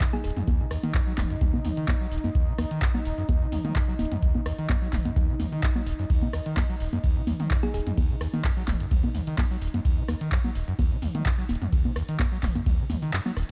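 A swung 4/4 groove drives this trippy, hypnotic acid house excerpt: a deep, dry electronic kick sits under a dry analog drum machine playing metallic hi-hats, ride cymbal, rim clicks, handclaps, shaker, congas and toms, both drum parts set in studio reverb. A squelchy, gritty overdriven acid bass riff with distortion, chorus and sidechain pumping cuts through a lush, detuned, warbling pad of sustained chords, itself pumping and chorused. A round, tine-like thumb-piano-style pluck with chorus and delay surfaces faintly at 0.1 and 7.6 seconds, and the kick drops out at 13.1 seconds in this dark, dry-sounding production.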